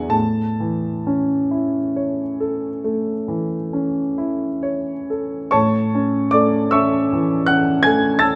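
A baby grand piano opens at once, sounding an A major chord at 0.1 s and settling into a serene, dreamy romantic nocturne in 12/8. The solo instrument has a warm, smooth, vintage character and sits up front, captured by close, detailed microphones that catch its tone across a range from E2 to A6. The tempo drifts between 42 and 56 BPM in dotted quarters with a free rubato feel, and the tuning rests at A4 = 442 Hz. The opening phrase runs to 5.5 s and is then heard again through to 8.4 s, where this short fragment of a longer piece breaks off. A wet recital hall reverb with a 1.4 s decay surrounds the piano, lending the performance a gentle sense of space.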